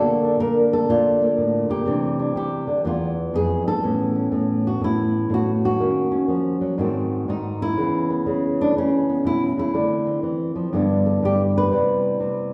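Relaxed and swinging, this solo jazz excerpt moves at 122 BPM in 4/4 with a swung eighth-note feel, settling into A major from 3.8 s after an opening passage built on Bbmaj7, C69 and E chords. A lone fingerpicked nylon-string guitar sits up front, its dark, deep classical tone ranging from E2 to B4 as it travels through colorful harmonies like D#m7, G#7b9, Dm9 and G69 before arriving on Cmaj7. A lush recital-hall reverb with a 1.4-second decay surrounds the instrument, giving it the resonant air of a church or concert hall.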